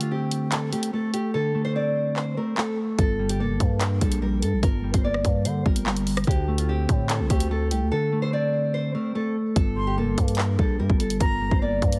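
A half-time drill groove at 146 BPM in 4/4 opens on a break, with the up-front electronic kit's handclaps, rim click and hard-clipped kick, whose warm hi-hats drop out at 1.3 seconds before a growling, buzzy, saturated 808-style bass lands at 3.0 seconds. Over a dark, clean electric guitar with subtle chorus, a small, fingerpicked nylon-string guitar with audible finger squeak carries the melody through digital delay as the chords move between D5 and Gm. At 9.8 seconds an airy silver concert flute with vibrato and its own delay adds a brief, unsteady second line, and the whole cold, tense hip hop excerpt sounds dry and heavily compressed, like radio.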